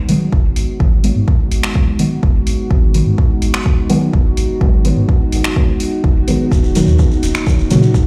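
Dub techno with a cavernous, nocturnal mood, where an overdriven, up-front kick and a gritty deep house kit of finger snaps and hi-hat drive a smooth sine sub bass, a detuned, moody analog pad with chorus, and soft, wave-folded chord stabs trailing dub echo and phaser, all pumping against the kick as a grainy acoustic shekere slips in at 6.5 s and the harmony moves from G#m7 to D#m7, all of it heard through a large, reverberant room.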